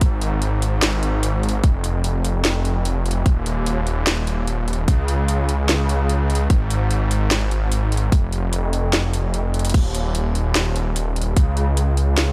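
Lush and playful, this future bass excerpt moves with a half-time feel, driven by a thick, detuned saw bass that blends sawtooth, square and sine tones into a saturated, sustained low end with chorus and sidechain pumping. An up-front electronic kick with a hard-clipped punch stops at 11.5 seconds, while a trap kit of sharp snare, metallic hi-hats and crash cymbal runs alongside, and a drum fill arrives at 9.5 seconds. Both drum parts carry a tape-warm tone, set in a digital ambience.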